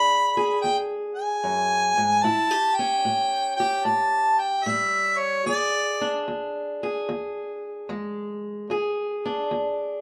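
A clear harmonica with light vibrato and scooped notes plays a jazz-tinged solo melody over a dark, boxy fingerpicked parlour steel-string guitar in this rollicking, swaggering acoustic country blues fragment at 74 BPM with a swung feel in E mixolydian, moving from E7 to A7 and back to E7, before the harmonica drops out at 6.2 s and the guitar carries on alone to 10.0 s, all heard in a small, roomy space with lossy compression artefacts.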